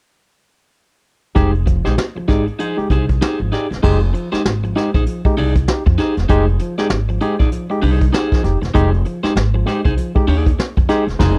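Funk with a sly, cool mood at 98 BPM in 4/4, swung on the sixteenths and set in F dorian, cut from a longer piece and opening on an Fm7 chord. A barky tine electric piano, bright and lightly overdriven through a combo amp, plays up-front stabs from 1.3 seconds, joined a moment later by the rest of the band. An upright bass, woody and plucked on steel strings, sits close and prominent in the low register, while a vintage brush drum kit gives natural, small-room kick, snare, hi-hat and crash with dark cymbals and a rolled-off top. An electric guitar at the edge of break-up supplies picked, compressed accompaniment higher up, bathed in spring reverb. After a brief opening section the music moves into a longer second section at 3.8 seconds, and the band hits a shared accent at 11.2 seconds. The sound is a dry, close 1970s-style studio recording with little room ambience.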